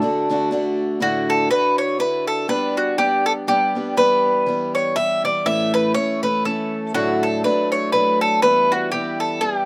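A picked bowl-back mandolin with a bright, double-string ring carries the melody up front, joined from the start by an equally forward, boxy parlour steel-string acoustic guitar with fresh strings in accompaniment, in a lively Celtic folk waltz in D major at 121 BPM with a swung 3/4 lilt, moving through D, Dadd9, G, Em and A in a dry outdoor sound across this 9.7-second excerpt from a longer piece.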